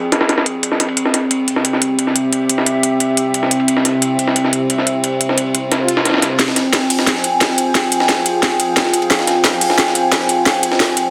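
A dense, heavily limited excerpt of dark technical drum and bass at 177 BPM in F harmonic minor, aggressive and mechanical, where a cracking, crisp layered electronic kit and a gritty, pitched-up breakbeat kit with a high-tuned snare sit up front over a moody detuned sawtooth pad with chorus and phaser and a warbling, nostalgic lo-fi pad, a very quiet swell sounding at 5.8 seconds before a drum fill and build-up arrive at 6.4 seconds.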